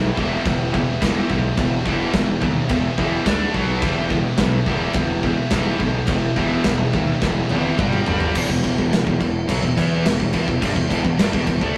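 Driven by a straight, steady pulse, this dark and aggressive heavy metal excerpt from a rough rehearsal room, lightly washed in reverb, pairs two bright, scooped high-gain guitar riffs, one tucked into the background, with a double-tracked heavy distorted guitar that drops out at 8.4 seconds after a drum fill. All of this sits over a growly, fuzz-overdriven picked bass and an up-front big-room rock kit with a punchy kick, a medium-tuned snare, a rolled-off top, and china and crash cymbals and toms.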